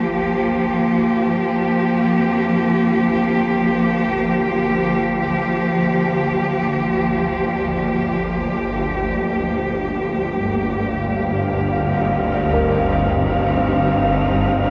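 In free time, this unsettling, cavernous dark ambient drone in G minor opens on a lush, up-front bowed cello section holding sustained chords over a swarming, detuned granular drone that fades in from 0.0 seconds, with phaser giving it a tense, vintage character. A very quiet, boxy baby grand piano adds short-sustain arpeggios from 2.2 seconds. The harmony moves from Gm7 to Cm/G at 10.4 seconds, and an airy, breathy wind-like noise layer enters shortly after at 10.8 seconds. A cathedral reverb with a 4.8-second decay and worn cassette tape with warbly pitch drift shroud the whole fragment.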